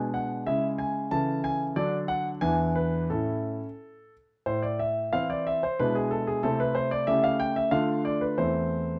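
In a 2/4 at 91 BPM with a rubato feel, this elegant, graceful classical-period sonatina fragment is played by a solo grand piano whose smooth, vintage tone sits up front, ranging from E2 to A5. It opens in A major, moving through chords such as D and E7 before settling on A, then darkens into A minor at 4.5 s, passing through A7/C# and Dm before closing on Am/E at 8.4 s. Light reverb and a dark, warm production round out the sound.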